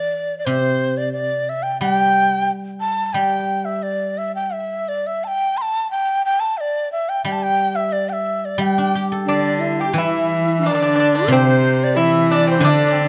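Pastoral and festive, this short Chinese chamber ensemble excerpt in the G zhi mode moves at 89 BPM in 2/4 with a rubato feel, its breathy large dizi carrying the melody up front with a buzzing membrane, a soft attack, vibrato and an unsteady tone over the ringing, silvery guzheng accompaniment. At 9.2 seconds a bright low xiao with crisp, airy tone enters on a second line, joined moments later by a biting, nasal solo cello and a dry, percussive pipa as the music turns to a new section at 10.0 seconds. Close, detailed microphones capture the players in a moderate recital hall reverb.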